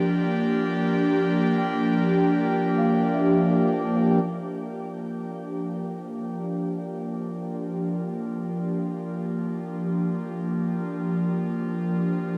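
Luminous and serene, this ambient fragment from a longer piece floats in free time on a Bb6 chord, tuned to A4 = 436 Hz. An airy, breathy pad sits up front, holding sustained chords with slow attacks and long releases, thickened by chorus and shimmer reverb. A very quiet, bell-like celesta plays delicate arpeggios close and dry, fading out over the first 4.2 seconds and stopping at 5.1 seconds, while a plate reverb soaks the mix in a dreamy wash and the pad fades in from 4.2 seconds to the end at 12.4 seconds.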